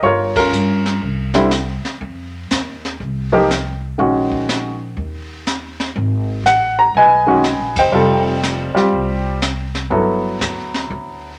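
Swung eighth notes in a relaxed 4/4 give this short jazz piano trio passage, cut from a longer piece, an easy, playful lilt. A clear, woody upright piano carries the melody up front, its slightly detuned tone and short sustain lending it a homespun charm as it ranges from its middle register up high. Beneath it, a pizzicato upright bass with steel strings supplies a growly low line, while a brushed drum kit sits further back with dark cymbals, a high-tuned snare, a boomy kick, hi-hat and ride. The trio hits shared accents at 0.3 and 7.7 seconds, and the harmony wanders through colorful chords such as Gm7b5, Abm7 and F9 before settling on Gmaj9. A club reverb wraps the band in an intimate, lively ambience.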